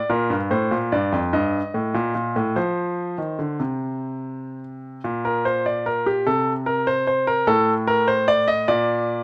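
A clear, intimate concert grand piano with audible action noise, deep bass and long sustain plays solo throughout this driving yet solemn baroque-style two-part invention in Bb major, moving in a straight 6/8 at 49 BPM counted in dotted quarters and tuned to A4 = 444 Hz, its harmony passing through Bb, Eb/G and F5 before a new section at 5.0 seconds travels through Am/C and Adim back to Bb, heard in light reverb and cut from a longer piece.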